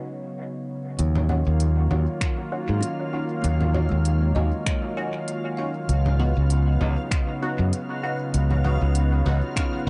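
Ambient dub at 98 BPM in Eb minor with a gentle 16th-note swing, spacious and hazy, where a detuned sawtooth pad holds soft chorused chords from the start, a bright, up-front fingered electric bass and a tape-toned kit of congas, finger snaps and smooth hi-hat with dub echo arrive at 1.0 seconds, a muted, resonant filtered chord stab with phaser and dub echo and a reversed, granular swelling texture drift in, a deep layered electronic kick joins at 2.2 seconds, and a very quiet woody kalimba adds ringing arpeggios from 2.8 seconds, over a Db9sus4 to Ebm7 progression in an echo-heavy, lightly reverberant mix.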